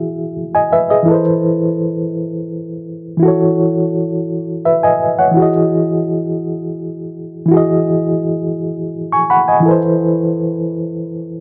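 A reed electric piano opens on an Emaj9 chord and carries this short R&B fragment by itself from 0.0 to 11.4 seconds, cut from a longer piece. The mood is sensual and warm, moving at 56 BPM in 6/8 with a straight feel, in E major tuned to A4 = 442 Hz. The instrument sits up front and sounds reedy and worn, a touch out of tune yet clean, played through its built-in speakers with a fast tremolo shimmering over every chord. Its voicings span E3 to C#6 as the harmony drifts from Emaj9 to Amadd9/E, settles on F#m13/E at 3.2 seconds, returns to Emaj9 at 5.4 seconds and ends back on Amadd9/E. Light reverb and a dark, warm production give the whole passage a warm glow.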